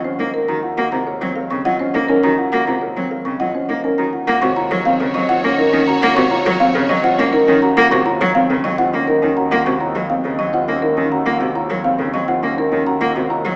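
Classical minimalist pattern music in 3/4, meditative and hypnotic, unfolding over a single Ebm9 chord in this cut from a longer piece. A woody marimba carries the melody with medium hard mallets above dark grand piano arpeggios with audible action noise, while dry, percussive xylophone arpeggios played with soft rubber mallets sit higher still. A focused, up-front bowed cello accompanies with vibrato and a distant bowed double bass anchors the bass. A lush studio string section adds sustained chords from 4.3 to 7.6 s, and the ensemble is heard from further back in a recital hall, with a small speaker character.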